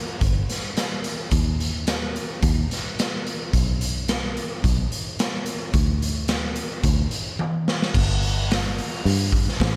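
Dry, with little reverb, this short psychedelic rock excerpt has a dark, trippy mood, moving at a straight 109 BPM in 4/4. A raw garage drum kit sits up front, saturated and gritty, with a punchy kick, a medium-tuned snare, hi-hat, toms and crash cymbal ringing in a bright, pumping stone room. A fingered electric bass underneath is round and foam-muted, heard direct and amped in its low register. A drum fill at 7.4 seconds leads into a new section at 7.9 seconds.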